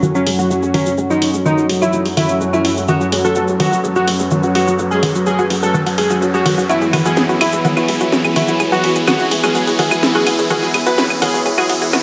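An echo-heavy, high-passed mix with springy reverb frames this dramatic, melancholic melodic techno build-up at 126 BPM in F# minor: an up-front, overdriven house kit of cracking snare, hi-hat, claves and congas and a grainy, close cabasa play alongside a fat, detuned lead with dub echo, an eerie, inharmonic synth bell line with tremolo, bold brassy pad stabs, a filter-swept, round analog pluck arpeggio, a deep, moody pad, a resonant overtone-sweeping drone and a very quiet, punchy sequencer bass, as the chords move from F#m to E at 6.7 s and an electronic riser climbs from 3.1 s.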